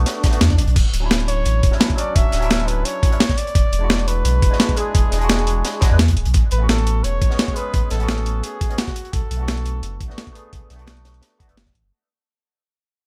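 Uplifting and dreamy, this short excerpt of liquid drum and bass at 172 BPM opens straight on a drop, with a thumpy, gritty electronic kick and a tape-warm sampled breakbeat kit up front, a darker, saturated acoustic break with rolled-off top sitting in the background, and a deep, round sine sub bass beneath a barky, lightly overdriven tine electric piano colored by phaser and delay. A brief electronic swell rises early, and at 1.3 seconds a veiled, close-miked trumpet with a bucket mute enters as a forceful, jazz-style solo with vibrato and dub echo over chords moving from Bm7 through Dmaj9, E9 and Amaj13. The music fades out from 6.3 seconds to the end.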